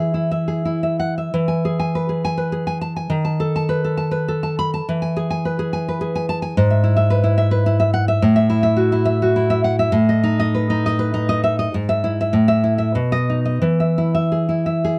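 A fingerpicked nylon-string guitar opens this romantic solo piece, its dark, full-bodied tone placed up front in a dry, close recording with a 1970s studio character and a touch of light reverb. The mood is sunny and nostalgic, moving in an unhurried 3/4 at roughly 85-110 BPM with a rubato feel that lets the phrases breathe. Set in E major, the guitar spans from G#2 up to B5, pairing deep classical bass notes with upper notes, and the occasional finger squeak adds an intimate, human touch. The harmony travels from E through B7/D#, E/G# and F#m7/A to B7/A, then gathers through A5 and B before settling back on E at 13.6 seconds. Cut from a longer piece, the passage shifts into a new section after a brief opening of 1.3 seconds.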